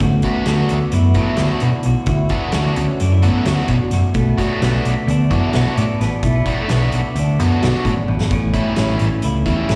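This live excerpt comes through a venue's PA into a recital-hall reverb, with a round, dark hollow-body bass sitting up front while the rest of the band plays around it in a wistful, bright blend of math rock and midwest emo in 9/8 at 260 BPM (eighths), in D major and tuned to A4 = 438 Hz. A ringing, meditative handpan plays close, full arpeggios with slapback echo alongside a twangy, slightly broken-up electric guitar from a small old amp carrying subtle chorus. A biting, double-tracked overdriven riff guitar enters at 0.2 seconds, and a distant, roomy indie drum kit with a tight kick plays a fill at 8.0 seconds as the chords move from D6 through Bm7 to A7.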